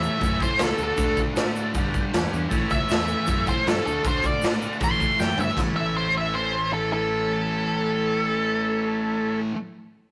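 A dark, octave-fuzz lead guitar melody opens this swaggering, raw garage rock excerpt over a bright, double-tracked thick fuzz guitar riff, a growly fingered electric bass, a buzzy overdriven combo organ holding heavy-vibrato chords and a grainy egg shaker, with a punchy, gritty raw garage drum kit entering at 0.2 s and playing a fill at 5.2 s before it stops at 5.7 s, captured in a rough rehearsal-room sound with stone room reverb.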